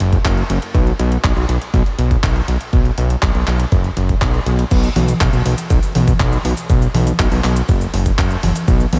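Italo disco at 121 BPM in straight 4/4, melodramatic and nostalgic, this brief cut centres on a fat, detuned sawtooth bass in a low register, tube-saturated with tape echo and a filter sweep, sitting up front over a gritty, thumpy, overdriven electronic kick from 0.1 to 8.8 seconds and a tape-warm, detuned 8-bit drum machine of cabasa, congas, crash cymbal, handclaps and hi-hat heard in a large room, all under light reverb, with a shift to a new section at 4.7 seconds.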